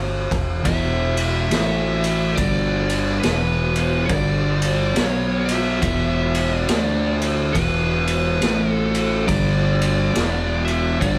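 A slow, swung 4/4 pulse at 70 BPM drives this brooding, hypnotic stoner and doom metal passage in E minor, cut from a longer piece. The growly, overdriven fingered bass opens at 0.0 seconds, with the raw garage drum kit arriving at 0.3 seconds: a punchy kick, a medium-tuned snare and ride cymbal sit up front with a gritty, saturated, rolled-off sound. Two thick fuzz guitars play the riff from around 0.6 seconds, one dark and one warm, both picked and distorted yet set back in the mix, moving through power chords E5, A5, G5, B5 and D5. A compressed, distorted fuzz lead guitar carries the melody high above them. Underneath, a barely audible vintage string machine with cellos holds mellow, sustained chords with a soft attack and ensemble chorus. The whole band sounds as though it is playing live in one room, wrapped in moderate studio reverb.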